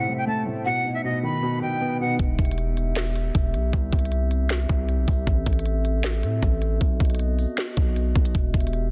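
Dark and brooding, this short cut from a longer trap hip hop piece moves with a heavy half-time feel. It opens with a filtered, intimate intro: an airy jazz flute carries the melody with expressive vibrato and a tape echo trailing behind it, while a felt-muted upright piano adds mellow accompaniment, its soft hammers and audible action noise sitting close to the ear. Beneath them, a glass harmonica holds ethereal, glassy chords with a slow attack and audible beating, staying in the background for the whole 8.9 seconds. At 2.2 seconds the flute and piano drop away and a trap drum kit arrives with a knocking kick, sharp snare and crisp hats, joined by a punchy, heavy 808-style bass whose fast attack and decaying sine tone carry a noise layer. The low end and drums sit up front in a dense, heavily limited modern master with a small room ambience.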